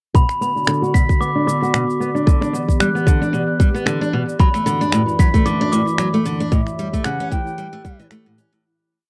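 A warbling, nostalgic tape-like pad, a bright, up-front picked steel-string acoustic guitar, its six-step arpeggio loop drifting against the bar under a filter sweep, and a tight, soft electronic kick open this intimate, wistful folktronica piece in B minor at 113 BPM, joined by a clicking found-sound beat of electronic cabasa and finger snaps and a mellow, bell-like glockenspiel step sequence through tape echo, before an airy baroque flute with 12-bit sampler grit adds a brief call phrase at 6.5 seconds as a fade-out that began at 5.8 seconds closes the dry, close 1970s-style recording.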